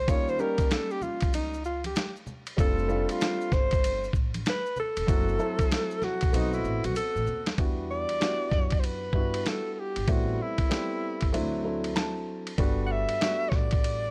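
A swung sixteenth-note groove in 4/4 carries this cool, mellow jazz-hop cut, taken from a longer piece. Up front, a dusty, compressed sampler-style drum kit lays down a thumpy kick, a medium-tuned snare, hi-hat and ride cymbal. Underneath, a pizzicato upright bass on steel strings adds a woody low end. A breathy alto saxophone, also up front, solos with vibrato and subtone in a jazz style through the first section, and a drum fill leads out of it at 6.3 seconds. A dark, mellow upright piano supplies the chords and takes a short fill at 11.6 seconds, while soft-handed maracas and congas add bright accents in the background until 7.6 seconds. The sound is a gritty hardware recording in a dry small room.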